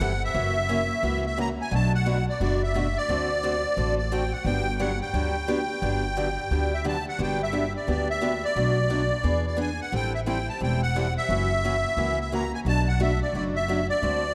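A swung 4/4 pulse drives this charming, playful snippet of acoustic string swing in the jazz manouche style, cut from a longer piece. A musette accordion carries the melody up front, its reedy, shimmering tone close-miked, dry and full. Beneath it, a picked steel-string parlour guitar supplies the accompaniment with fresh strings that sound bright and a touch boxy, while a pizzicato upright bass on gut strings adds a woody, thumpy low end. The harmony moves through F#7, Bm7, D7 and Gmaj7, and the second pass of the tune begins at 7.2 s, later turning through Bm7, E7 and Am7 before returning to F#7 and Bm7. The dark, warm production sits in a wet scoring-stage reverb, and the three parts play together from the opening to about 14.3 s.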